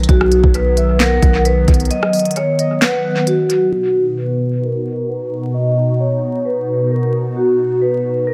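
Trap-flavoured hip hop at 132 BPM in a half-time feel and B major, this triumphant yet wistful cut from a longer piece opens with a hollow, warbling pad holding sustained chords, a distorted, saturated 808-style bass and a knocking electronic trap kit of crisp hats, sharp snare, handclaps and rim clicks. A ringing, metallic vibraphone carries the melody with slow motor vibrato and tape echo, while a smooth, gliding portamento lead sits in the background as a second line. The bass drops out at 1.9 seconds and the drums by 3.6, leaving vibraphone and pad under a filter sweep from 3.7 seconds, all inside an echo-heavy digital ambience dusted with vinyl crackle.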